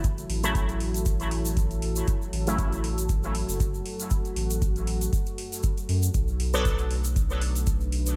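This dub techno excerpt moves at 118 BPM in 4/4 with a 55% swing on the sixteenths, settling into a meditative, hypnotic groove in F# minor. A deep, tape-warm electronic kick and metallic analog hi-hats, both re-recorded in a large room, carry the beat alongside a grainy, bright egg shaker, with the kick dropping out at 7.8 seconds. Beneath them, a round, dark analog bass with sine and triangle tones pumps against the sidechain, while a moody detuned sawtooth pad with a sub octave and slow attack holds sustained chords, its chorus and built-in reverb sinking into the background. A juicy, resonant polysynth cuts in with bright filter-swept stabs from 0.4 to 2.6 seconds, treated with chorus, phaser and dub echo, and returns briefly at 6.5 seconds. The harmony rests on F#m7 before shifting to Bm7 at 6.1 seconds, all framed by light digital ambience and a bright 1980s-style digital production.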